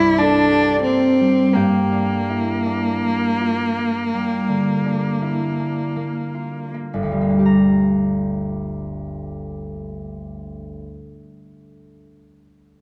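A rich, bowed cello carries the melody up front with vibrato, a soft attack and expressive portamento, giving this impressionist classical duo, cut from a longer piece, a mysterious, wistful cast until it falls silent at 6.7 seconds. A bright, fingerpicked concert harp accompanies across a broad range, its ringing acoustic tones continuing alone until 11.0 seconds in a wet scoring-stage reverb. The rubato pulse slows over the opening 7.5 seconds as the harmony moves from C9 to Gm7, then settles on Gm when the second section begins.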